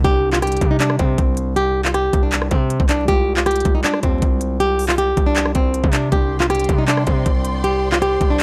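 A dark, fingerpicked flamenco guitar carries the melody up front over crisp hats, a knocking kick, handclaps and rim clicks, while a distorted, saturated 808-style bass hits heavy and a worn, slightly out-of-tune electric piano sits lightly overdriven in the background. This hard-hitting, eerie trap cut runs at 158 BPM in a half-time feel, moving from Csus2 to Fmadd9/C and back, with a dry, gritty sound and vinyl crackle. At 6.1 seconds a lush, bowed symphonic string section enters with soft-attack vibrato chords high above the beat.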